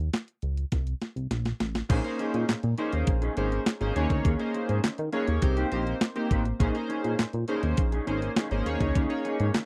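Early-eighties boogie funk at 102 BPM in Bb dorian with a slick, late-night mood: a dark, glossy chorused synth bass and a crisp, thumpy 8-bit drum machine with handclaps open the piece, the drums playing a fill from 0.7 to 1.9 seconds before a full-bodied, evolving chorused polysynth and a clean, fingered electric guitar with ensemble chorus enter together at 1.9 seconds over minor-eleventh and suspended-seventh chords, all in a dry, close 1970s-style studio sound.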